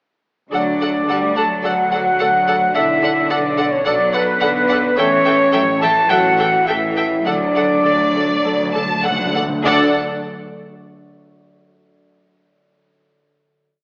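An AM-radio-filtered sound bathed in scoring-stage reverb carries this heroic, soaring cinematic adventure cue in D major, moving at 99-109 BPM in 4/4 and slowing from 3.9 s, where a lush vibrato studio violin section sings the theme, doubled an octave away by a clear clarinet, an airy flute ensemble and a vintage-toned trumpet section, over a second very quiet symphonic violin line, expressive portamento violas, dark distant French horns, a faint ringing concert harp, a rich cello counter-melody and bowed double basses on the beats, before soft-mallet timpani enter at 7.3 s with a roll and the whole piece settles on a final D chord that rings to 12.0 s.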